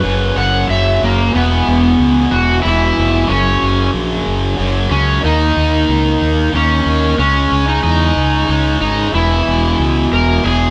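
Opening on a brief build-up over a suspended chord, this hopeful, cinematic post-rock fragment in three-four puts a warm, overdriven slide guitar melody up front alongside a bright, double-tracked distorted guitar riff and a fuzzy, fingered electric bass, the trio playing live together in one room with moderate studio reverb as the harmony moves from E5 through F# and C#madd9 back to E5.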